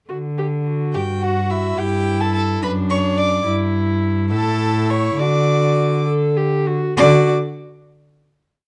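Heard through a dark production with a touch of reverb, this complete, cheerful and graceful classical-period string quartet movement moves quickly in 6/8 at 66-72 BPM in D major, its four bowed players sharing a reedy gut-string period tone: the rich, up-front cello holds sustained bass with passing notes while the smooth-topped viola adds independent inner lines, sustained chords and answers at phrase ends from 0.1 s, then at 0.9 s the first violin enters with a light-vibrato melody as the close, nasal second violin with its airy bow doubles the tune at the octave, all settling on a final chord at 7.0 s.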